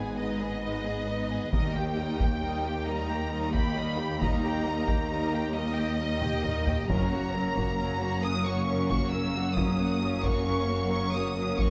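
Dramatic and epic, this short cut from a cinematic orchestral film score moves in a compound 12/8 metre. A lush, vibrato-rich violin section carries the melody high and smooth, while a second, closer violin section bowed in a warm, even tone shapes a line beneath it. Violas fill out the accompaniment from a distance, a mellow French horn section sustains roomy chords in the background, and focused cellos join full-bodied, expressive double basses to anchor the low end. At 1.5 seconds a taiko ensemble enters with heavy sticks, joined briefly by articulate hard-mallet timpani until 2.2 seconds, and the taiko play a fill at 6.2 seconds. A moderate scoring-stage reverb gives the ensemble a grand, spacious sheen over a dark minor harmony that turns toward brighter chords.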